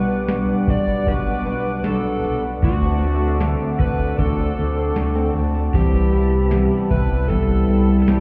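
A straight 4/4 beat from a booming analog drum machine, with deep kick, crisp snare, ride and tambourine, enters at 0.3 s beneath a fat, detuned sawtooth bass up front, while a dark, overdriven slide guitar carries the melody through delay over a clean, scooped electric guitar with harmonic tremolo and lush chorus, a smooth, mellow analog pad with chorus and phaser, a woody, shimmering twelve-string acoustic picking arpeggios in the background, and a very quiet, twinkling granular texture, all moving through Gmaj7/B, D7 and Cmaj7 in an ethereal, dreamy dream pop excerpt that sounds muffled through a wall in a club.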